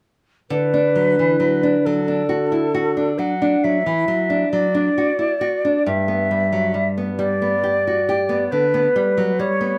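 Lyrical and serene, this short passage from a longer romantic duo for flute and classical guitar unfolds in 12/8 with a free, rubato feel. A mellow concert flute carries the melody from 0.5 to 9.8 seconds, its airy, tongued tone shaded with vibrato and sitting up front in the mix, though with a slightly distant quality. Alongside it, a nylon-string guitar provides fingerpicked accompaniment over the same span, its warm acoustic sound small and also placed up front. The harmony rests on D before shifting to G at 5.9 seconds. A light reverb gives the pair a gentle sense of space.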